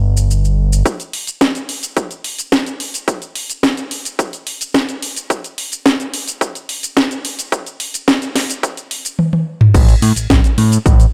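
Sleek and groovy, this nu-disco excerpt opens with a brief hit of fat, detuned sawtooth-and-square analog bass before an overdriven, up-front house kit of cracking snare, hi-hat, shaker, toms and crash joins at 0.2 seconds. A punchy, layered electronic kick enters at 0.9 seconds to drive a build-up that ends in a drum fill. The thick bass, with its filter sweep and moving notch, returns for the drop at 9.7 seconds, all set in a dry mix.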